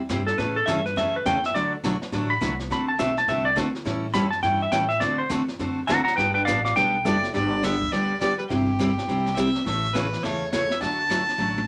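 Western swing country at a brisk 207 BPM in G major, this playful, swinging passage is cut from a longer piece and moves with an eighth-note swing in 4/4. A woody, growly upright bass played pizzicato and a bright, full-bodied picked dreadnought acoustic guitar carry the accompaniment, while a brushed jazz kit with a boomy kick and a smooth, rolled-off top keeps time beneath them. Up front, a clean, slide-fingered lap steel carries an electric slide guitar solo from the start to 7.3 seconds over changes that move through A, D, D7, A7 and a closing Gadd9. Just before the second section opens on G at 7.3 seconds, a clear, biting fiddle with light vibrato takes the melody, and a dark, compressed hollow-body jazz guitar adds a second line in the background. A drum fill at 11.4 seconds marks the end, with everything set in a studio ambience with a short, wet reverb.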